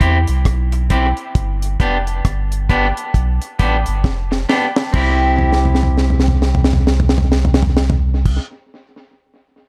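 Over a relaxed 4/4 pulse with a swung sixteenth-note lilt, this short roots reggae cut feels laid-back and uplifting, moving from C to G and back to C. A deep reggae drum kit sits up front, dry and dark with a high-tuned snare, tight kick, rim click, hi-hat, toms and crash cymbal, its tape echo trailing the hits. Fills roll through from 4.0 to 4.9 seconds and again from 5.4 to 8.2 seconds. Underneath, a soft dub sub bass carries the low end with a round, mellow tone and fast attack, sustaining its notes beneath everything and sitting loudest in the mix. An electric guitar at the edge of break-up plays the accompaniment, picked and twangy with a slightly gritty edge, bathed in spring reverb, plate reverb and tape echo. The room itself stays close and dry, so the echoes on guitar and drums stand out clearly against the intimate sound.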